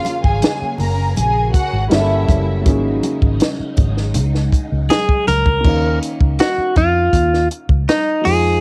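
Smooth and silky, this short cut from a longer lush 1970s-style soul piece carries the character of a home cassette recording. A bowed studio string section with expressive vibrato and a smooth top sings up front for its first 2.4 seconds, over a warm grand piano with audible action noise and a swirling, phased string machine holding soft sustained chords in the background. A dry, compact cocktail kit with a punchy kick, high-tuned snare and dark cymbals anchors the groove beside a round, foam-muted fingered electric bass and very quiet, hard-handed congas. The harmony drifts from Gbmaj7 through Gdim7 to Ab7sus4. At 4.9 seconds a bright, twangy electric guitar, recorded direct and compressed, takes the melody up front, just before the chords settle onto Ebsus2 at 5.6 seconds.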